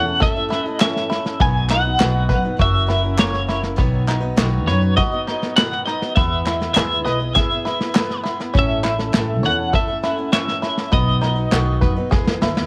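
A twelve-string electric guitar carries the melody up front with tremolo and tape echo, over a bright, boxy parlour acoustic guitar, a twangy fingerpicked banjo playing arpeggios through its own tape echo, and a woody, thumpy pizzicato upright bass, opening this nostalgic indie folk cut in E major at 101 BPM with a building arrangement. A dark, smooth brush kit with a punchy kick and a rolled-off top joins at 0.2 seconds, crisp, saturated group handclaps follow at 0.8 seconds, and the chords move through A, B, F#7 and E before a drum fill arrives at 12.1 seconds. The small-room ambience of a home recording on cassette gives it a warm character.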